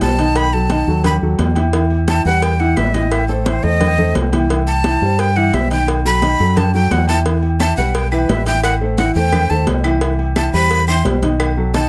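Passionate and fiery, this salsa excerpt moves at 174 BPM in E harmonic minor, with a breathy, bright jazz flute soloing up front, its vibrato, chiff and crisp attack giving the line an unsteady edge over a cycling B7, Em, Am, C progression. Beneath it, a dark, mellow upright piano with a woody, boxy tone supplies accompaniment, while a round, punchy fingered electric bass sits up front. Soft-handed, high-tuned congas and ringing timbales and agogo bells stay in the background alongside a tight cowbell, and distant claves join from 7.6 seconds, all within a light reverb and close, detailed sound.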